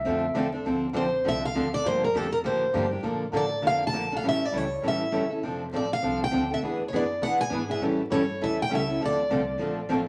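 Vinyl crackle and a wet, large studio reverb surround this fiery, swinging cut from a longer piece of jazz manouche. A dark clarinet with vibrato and scooped notes sounds only until 0.5 s, while a woody, thumpy pizzicato upright bass on gut strings and two picked acoustic guitars carry the swing: a bright, up-front steel-string with fresh strings and a boxy swing-style guitar sitting in the background. From 1.0 s, a second steel-string guitar takes the melody, bright with finger squeak, over a minor progression running from Dm7 through Gm9, Bbmaj7, A7 and F6 to E7 and A7 before returning home to Dm7.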